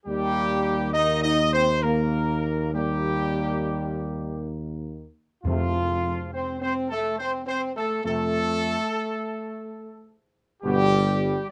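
A mellow trumpet section with a soft attack and smooth top carries the melody from 0.1 s, over sustained chords from a warm French horn section and a clear trombone section set in the background, a dark tuba bass up front, and close, dry timpani on F with medium mallets from 5.4 to 6.7 s, in this regal and solemn classical ceremonial fanfare at 68 BPM in 3/4 that moves from Eb to F to G, recorded with light reverb and close, detailed microphones.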